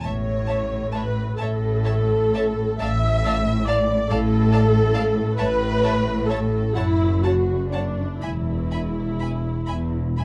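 Lyrical and warm, this slow romantic classical movement for string orchestra unfolds in a flexible, rubato 6/8, with harmony shifting from A to D over an A bass before it falls away. A clear, close violin section carries the high melody with light vibrato, while a second violin section sounds rich but distant beneath it. An up-front, focused viola section and a lush, symphonic cello section fill the middle and low register, and an expressive double bass section with portamento grounds it all in a dark production with light reverb.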